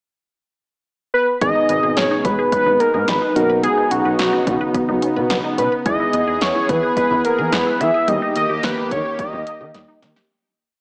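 A straight 4/4 drum-machine beat at 108 BPM drives this short, complete synth-pop piece in G# minor, with a cool, nocturnal mood. The thick, bold unison lead enters first at 1.1 seconds, sitting up front with a sub octave and vibrato as it sings a motif-based melody. At 1.4 seconds the rest of the band arrives: punchy, dry analog kick, snare and hi-hat dressed in gated reverb, and a smooth, gliding sawtooth bass with portamento. In the background, round electric-piano-like synth keys hold chorused triads, a lush, detuned pad sustains chords under chorus, and a juicy, squelchy blip pluck runs sixteenth-note thirds arpeggios through phaser and tape echo. The harmony moves from G#m to Badd9, E and D#, and the piece fades from 8.1 seconds, closing on a brief drum fill. A moderate digital room reverb and a small-speaker character give the mix a compact, boxy finish.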